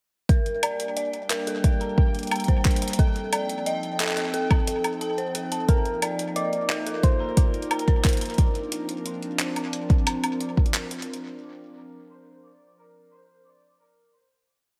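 IDM with a wistful, glitchy mood, where an overdriven electronic kick drum sits up front beneath a gritty, pitched-up jungle sampler-style kit of handclaps, hi-hat and woodblock in an ever-changing beat, while a warbling, lo-fi pad holds mellow chords, an eerie, inharmonic synth bell repeats a 16-step arpeggio through a filter sweep and tape echo, a pulsing gated texture holds a single bright high note in the background, and a round, gentle synth lead carries a short motif with vibrato from 5.7 seconds, all set in an echo-heavy mix with digital ambience.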